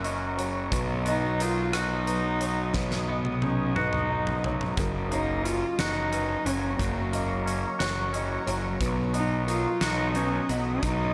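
A slow 6/8 pulse at 59 BPM, counted in dotted quarters with a straight feel, carries this brooding, cathartic post-rock passage, cut from a longer piece and tuned slightly flat to A4 = 438 Hz. The harmony moves between Gb and B. A huge arena drum kit with a punchy kick and fat snare plays hi-hat, rim clicks and toms in a hall-like space, and a drum fill runs from 2.8 to 4.8 seconds, where the opening phrase repeats. Up front, a fuzz-soaked, overdriven picked bass holds the low end, while a clean, twangy, fingered electric guitar arpeggiates through vibrato and tape echo. Behind them, a soft, felt-muted upright piano adds boxy, intimate arpeggios with audible action noise, and a blurred, detuned granular pad sustains evolving chords in its own built-in reverb. From 1.1 seconds a single bowed cello, dark and veiled under its mute with light vibrato, carries the melody through tape echo, and the whole passage sits in a light reverb.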